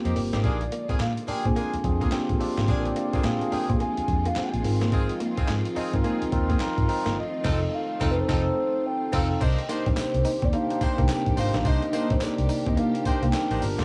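A bouncy, punchy new jack swing excerpt opens on a tine electric piano played through a combo amp, tight jazz-style horn stabs with tape echo, and a dark, foam-muted fingered bass with a round, amped tone. A gritty, pitched-down sampler-style drum kit sits up front with a thumpy kick, a medium-tuned snare, handclaps, tambourine, hi-hat and crash, all carrying a swung sixteenth-note feel. A bright, compressed guitar recorded direct adds a picked riff through lush chorus, while a bowed studio string section holds smooth, vibrato-laden chords in the background from 0.4 seconds. Over the top, a soft octave-layered synth lead with a sub octave and a triangle-and-sine blend carries the melody, its sustained notes colored by chorus, phaser, cassette tape and tape echo. The band hits a shared accent at 7.2 seconds before the harmony moves to a minor ninth chord at 9.4 seconds. The whole mix has little reverb and the character of a home cassette recording.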